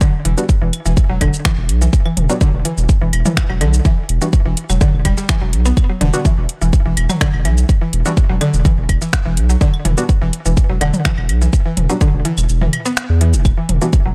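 This short cut from a longer minimal techno track sounds dry and close, with very little reverb, giving it a hypnotic, cool atmosphere at 125 BPM in a straight 4/4, centred on E minor over an E7(no3) harmony. A punchy, tape-warm electronic kick sits up front, joined by a house kit of finger snaps, metallic hi-hats and shaker, and by electronic claves and toms touched with dub echo. A deep, saturated sub bass with a sine core and a fast attack holds down the low end, pumping against the kick. The riff comes from a bright, woody, round, mallet-like FM synth pluck, its short decay smeared by lush chorus, delay and sidechain pumping. Muted, detuned sawtooth chord stabs, filtered and evolving, drift through with chorus and dub echo, while the kick briefly drops out from 12.5 to 13.5 seconds before the groove returns.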